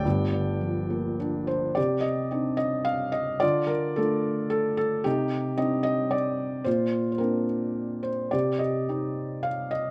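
Moody and bittersweet, this lyrical classical excerpt in C dorian features a solo felt-muted upright piano, soft and intimate with audible action noise, drifting with rubato in 3/4 at 109 BPM through chords such as Gm7, Cmadd9 and Bbadd9 across a range from G1 to G5, captured up front by close, detailed microphones with light reverb.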